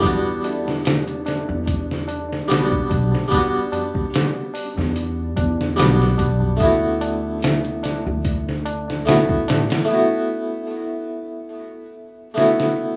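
Melancholic and cinematic, this trip hop excerpt moves at 73 BPM in E minor with a light swing, its harmony shifting from Em7 to D6 at 6.6 seconds. An up-front, bright harpsichord with tremolo and tape echo carries the accompaniment throughout, over a woody, dark pizzicato upright bass and a gritty, pitched-down sampler-style kit with a thumpy kick, while a high-tuned, ringing tabla and a very quiet, flickering granular texture add color. The bass, tabla and texture drop out just before 10 seconds, leaving harpsichord and drums, which close with a fill from 12.4 seconds in a rough home-demo mix with small-room reverb.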